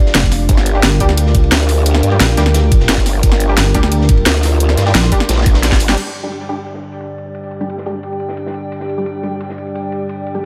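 A dark analog pad and a warbly, tape-like pad open this tense, futuristic cut from a longer piece of dark technical drum and bass, the analog pad sustaining moody G minor chords as both pads move under sidechain pumping at 175 BPM in a straight 4/4. Within the first second the drop hits with a knocking electronic kick, an overdriven kit with a cracking snare and bright hats up front, a gritty breakbeat kit with dark cymbals sitting in the background, and two basses up front: a heavy, detuned pluck wobble bass with tube saturation and a growling, formant-filtered growl bass that pumps against the kick. A bold, nasal orchestra-hit-like stab cuts through with a bright, noisy edge, trailing tape echo and its own reverb. The pluck bass bows out around 5.1 seconds, and with a drum fill and a band accent near 6.0 seconds the upfront kit, kick and growl bass drop away as well, leaving the pads, the lo-fi, phaser-tinged texture, the stabs and the rolled-off breakbeat kit to carry the second section. 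The mix is dry and loud, with sampler grit on the darker pad and a mellow, nostalgic warble on the higher one.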